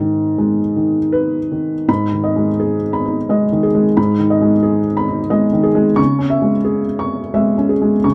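A dry, close 1970s-style studio sound with light reverb frames this reflective, melancholic neoclassical minimalist piano piece at 88 BPM in a rubato 3/4 with uneven beats, where a solo felt-muted upright piano, boxy and up front with audible action noise and short sustain, ranges from G#2 to C#6 in G# minor, tuned to A4 = 443 Hz, moving from G#m to C#m at 6.0 seconds in this brief fragment cut from a longer work.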